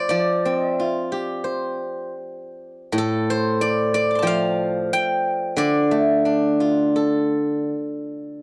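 A bright, silvery steel-string zither played with fingerpicks rings up front as the sole voice throughout this 8.4-second fragment of contemplative, elegant Chinese traditional solo plucked-string music in D yu mode, moving freely in rubato around 76-93 BPM in 4/4 across a range from A2 to D6, captured in a dry, close 1970s-style studio sound with light reverb.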